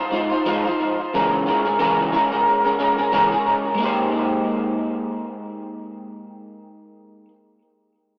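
A 4/4 pulse at 90 BPM carries a gentle swing on the sixteenths, giving this short indie pop excerpt in Ab major an easy, sunny, dreamy lilt. A lone electric guitar through a small old amp plays the accompaniment from 0.0 to 7.4 s, its picked tone bright, twangy and slightly broken-up, sitting up front in the mix. Analog chorus, a warbly pitch drift and tape echo color the guitar, so its notes seem to float and waver. The harmony moves from Fm7 to Dbm6 at 1.1 s, then settles on Abmaj9 at 3.8 s, where a second section begins. A moderate plate reverb and a heavy wash of echo surround the guitar, and the overall sound has the boxy character of a small speaker.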